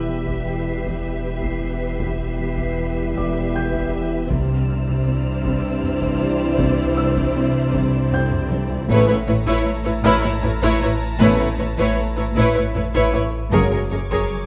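Cinematic suspense film score in 3/4, eerie and ominous: a close, rich studio violin section carries the melody over a second violin line, a distant viola section, background French horns and roomy trombones in mellow sustained chords, dark woody cellos and double basses, a punchy sub-bass drone with a pitch-drop attack, a felt-muted upright piano with audible action noise, high violin texture, a very quiet cello riff from 0.1 s and very quiet hard-stick taiko drums from 0.3 s, with a band accent at the opening and a drum fill at 8.3 s, all set in scoring stage reverb as the harmony moves from Em through Cadd9 and Aadd9 to F#add9.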